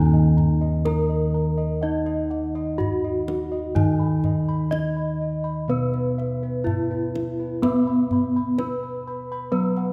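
Cut from a longer Javanese gamelan piece, this hypnotic, shimmering passage opens with an up-front bronze metallophone melody, struck with a wooden mallet and ringing with the beating of its paired tuning, over a dark, smooth metallophone accompaniment, round, vintage-sounding, band-limited bossed-gong arpeggios and a dark, smooth bossed-gong bass line, before a deep, close kendang joins at 0.4 seconds, all set in a moderate stage reverb.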